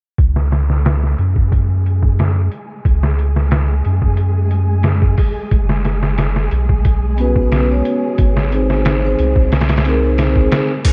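A straight, unhurried trip hop groove in 4/4 sets a dark, melancholic mood from 0.2 seconds, built on a compressed, pitched-down sampler-style drum kit with a thumpy kick, a medium-tuned snare, hi-hat and crash cymbal, all filtered and tape-warm, set up front with a touch of studio reverb. Beside it sits a deep, round dub sub bass with a soft, sustained tone and a fast attack, also prominent in the mix. From 1.2 seconds a flickering, grainy granular texture hovers quietly in the background, detuned and slow to bloom, with a long release, chorus and its own reverb. At 7.2 seconds a mellow vibraphone played with soft mallets enters up front, metallic and ringing, roughened by vintage 12-bit sampler grit, a harmonic tremolo, filtering and tape echo. The harmony moves from C#5 through F#sus4 to G# in this brief, lightly reverberant fragment cut from a longer piece, its sound dusky and rolled off at the top.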